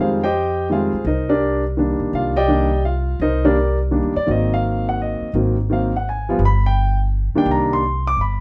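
A concert grand piano and a pizzicato upright bass open together in this moody, late-night jazz excerpt, swinging in 3/4 at 168 BPM in C minor. The intimate piano carries the melody with deep bass, audible action noise and a plate reverb, while the thumpy, woody bass sits up front beneath it. Both play through a harmony that moves from Fm9 to Cm9, Ab7 and G5 before returning to Cm9 at 7.5 seconds, in a moderate studio room.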